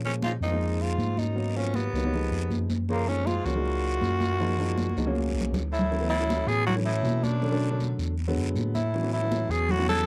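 A growling, raspy tenor saxophone with subtone and vibrato carries the melody up front in this sunny, sophisticated Afro-Cuban jazz excerpt at 159 BPM in 4/4, joined by a clear baritone saxophone second line that scoops into notes from a roomy distance. A mellow tine electric piano holds down the bass, while a dark, woody upright piano comps smoothly and bright, high-tuned congas ring from the background alongside a close, scratchy guiro. After a fill from 4.8 to 5.9 s, the harmony shifts from F# major colours to a Dmaj9-led passage, all framed by light reverb in a dry, close 1970s-style studio sound.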